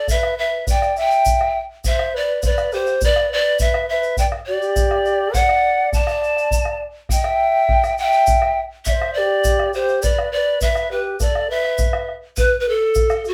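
A bright, breathy bamboo pan flute carries the melody up front with vibrato and a soft, chiffy attack, joined by a large quena playing a straight-toned, wooden second line until 12.1 seconds, over a deep, dark bombo and a grainy tube shaker, in this festive, earthy Andean folk piece in E minor at 68 BPM in 6/8, heard as a live ensemble in a lively studio room.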